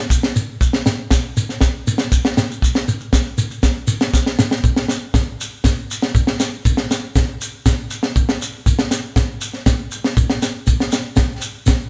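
A grainy, mellow shekere opens this sunny, danceable highlife groove, with the drum kit joining at 0.1 seconds. The acoustic kit has a funk feel, built on a tight kick and a high-tuned snare that sound dry and sit up front. The shekere also sits close, its vintage, band-limited tone giving it an old-record character. The band plays live in one room, and a moderate stone-room reverb surrounds the performance. The tempo holds at 119 BPM in straight 4/4, and a drum fill from 4.1 to 4.6 seconds leads into a new section that carries on until the clip, cut from a longer piece, ends.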